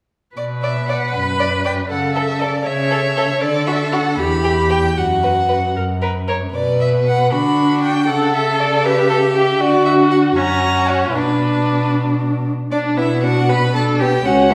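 Classical-period string quartet movement in B minor, a quick, urgent and restless 6/8 at 78 BPM in dotted quarters, cut from a longer piece and set in the wet reverb of a recital hall or church. A rich, expressive first violin carries the melody with vibrato and portamento, while a second violin adds a smooth-topped, warm second line from 0.6 seconds and a clear, focused viola sits distant in the accompaniment. Beneath them, an even, up-front cello anchors the bass through a progression that returns from D and F# to B minor by 11.1 seconds.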